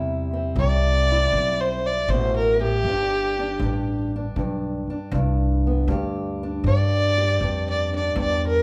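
Recorded live in one room with light reverb, this short cut of swaggering, laid-back acoustic country blues swings easily in four. A dark, nasal fiddle with light vibrato sits up front and takes the melody from 0.6 seconds. Beneath it a boxy, fingerpicked parlour guitar and a thumpy, woody pizzicato upright bass move from C to G, while a punchy kick drum played with brushes stays in the background.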